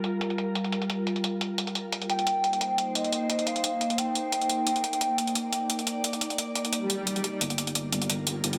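Liquid drum and bass at 175 BPM with a light swing, melancholic and soulful, built on a glassy, ethereal FM pad whose sustained Gm7 and Cm7 chords are chorused and filter-swept, over gritty, pitched-up, low-pass-filtered electronic hi-hats and drums sitting up front. A soft, hollow, woody clarinet-like synth lead carries the melody from 2.1 s, dressed in lush chorus and tape echo, before an electronic swell and riser build from 6.8 s. A smooth sawtooth-and-square synth bass enters on G1 at 7.4 s as the chords return to Gm7, all set in a huge ambient reverb with a dense, heavily limited modern master.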